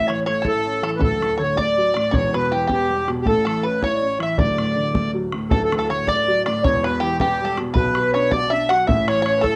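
A reedy, up-front accordion carries the melody in this cheerful, lively Celtic jig in D major at 107 BPM in 6/8, with a pure, vibrato-tinged baroque flute in the background and a twangy, fingerpicked banjo sharing the second line, a woody, vintage upright piano accompanying up front, those four parts colored by cassette tape, and a damped, tight bodhran on percussion, all set in moderate studio reverb on a home cassette recording cut from a longer piece.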